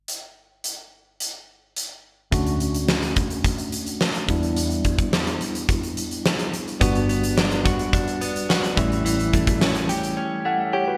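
This 1980s-style pop excerpt moves at 107 BPM in D major with an uplifting, nostalgic mood, opening on a huge arena drum kit alone, its fat snare and punchy kick sitting up front and bathed in gated reverb. At 2.3 seconds the tine electric piano arrives with a clean accompaniment heard through its built-in speakers, joined by a dark, round, foam-muted fingered electric bass that stays in the background beneath the harmony of Dmaj7, Em7, Gmaj7 and A7. At 6.8 seconds a direct-recorded clean electric guitar enters with a picked, compressed riff, given a subtle chorus and digital delay. The drums and bass drop out near the end, leaving the electric piano and guitar, with the piano playing a brief fill from 10.2 seconds. The bright digital production places the parts in a moderate, lush hall reverb with a touch of small room ambience, a clip cut from a longer piece.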